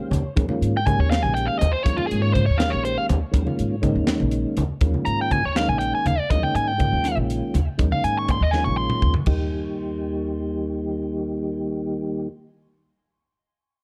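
A biting, overdriven electric guitar soars up front through a funky jazz fusion solo in a straight 6/8, entering at 0.8 seconds over an Eb9sus4 vamp. Beneath it, a flute-like tonewheel organ with slow rotary speaker and chorus vibrato opens with a short fill. A woody, thumpy upright bass, a polished kit with a high-tuned snare and tight kick, and thick-skinned congas in the background fill out the groove. The kit closes with a fill at 8.5 seconds, after which the organ and bass settle on the Eb chord in a small, dark-sounding room until this cut from a longer piece ends at 12.3 seconds.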